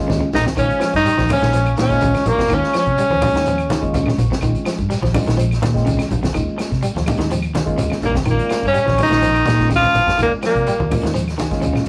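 A worn, slightly out-of-tune electric piano and a dark, round fingered bass open this hypnotic, funky afrobeat excerpt, joined at once by a drum fill on a punchy vintage kit, ringing low-tuned congas, a grainy shekere and a twangy, slightly broken-up guitar playing arpeggios, with woody claves following shortly after. Meanwhile an up-front tenor saxophone with light vibrato carries the melody in two phrases over a very quiet trombone section and a buzzing, shimmering sitar, the second phrase arriving from 8.1 seconds, before an electric piano fill at 11.2 seconds closes a rough rehearsal-room recording with a small room's reverb.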